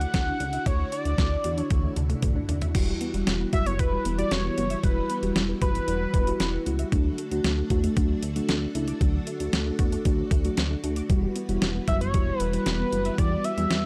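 An up-front, tape-warm, detuned 8-bit digital drum machine with a thumpy kick and medium-tuned snare drives this nocturnal, melancholic synth-pop excerpt at 115 BPM in E dorian, fills briefly at 1.7 seconds, and carries a bold, nasal octave-doubled lead with vibrato, a dark, glossy chorused synth bass, shimmering string-machine violins, a lush detuned unison pluck in the background, and muted, warbling felt-like synth keys that enter at 2.7 seconds, all in a dry, gritty recording with digital ambience.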